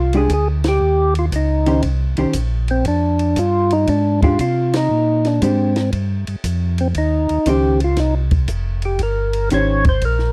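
Swinging eighths at 117 BPM in 4/4 drive this bluesy soul jazz organ trio clip, where a fat, percussive tonewheel organ with key click and slow rotary speaker carries the melody over a round, mellow organ bass line, a dark, compressed hollow-body electric guitar comps through chords such as Bb13 and Eb6, and a dry cocktail drum kit with a high-tuned snare and tight kick sits up front, the band striking accents at 0.6 and 4.7 seconds in a close, small-room 1970s-style sound.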